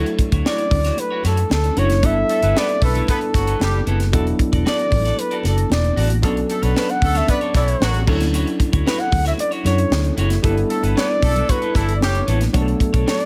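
A worn, slightly out-of-tune tine electric piano with analog chorus, a clean picked guitar riff with subtle chorus and a dark, round, foam-muted fingered bass open this slick, nocturnal 1980s jazz-funk pop excerpt at 114 BPM, soon joined by a dry, tight funk kit with a high-tuned snare and gated reverb, very quiet high-tuned congas, a mellow, close-miked flugelhorn melody with light vibrato and delay from 0.5 seconds, and a clear pop-style horn section carrying a second line from 2.3 to 12.2 seconds, all over Dmaj9, G69, E9sus4 and Bm9 chords in a polished mix with little reverb.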